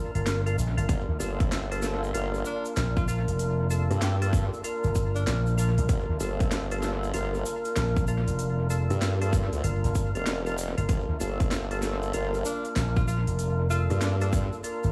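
A punchy, amped slap bass run through an envelope filter anchors this gritty, funky glitch hop excerpt, sitting up front with tube saturation from 0.1 seconds onward at a swung 96 BPM in G minor, tuned slightly flat and resting on a single Gm7 chord. Beside it, a formant-sweep wobble bass of sawtooth and sine tones adds a compressed, sustained wobble with chorus, arriving alongside a tight, tape-tinged electronic kick. A percussive tonewheel organ plays fat, lightly overdriven stabs through a slow rotary speaker, roughened by 12-bit sampler grit, pumped by sidechain and trailed by analog delay. A drum and bass kit supplies a cracking snare, crisp hats and rim clicks in a small room, while a grainy, band-limited egg shaker sits low in the mix. In the background, a close-miked tenor saxophone with breathy subtone and vibrato offers brief jazz phrases at 2.5 and 12.5 seconds, its sound echo-heavy under light studio reverb.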